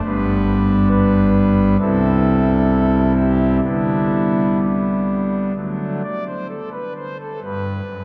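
Serene and reverent, this brief classical chorale for solo pipe organ moves at an unhurried, rubato pace, its thick, romantic foundation stops sitting up front while a long, dark cathedral reverb lets each chord from G to C and back through D bloom and linger before settling home on G at 7.4 seconds.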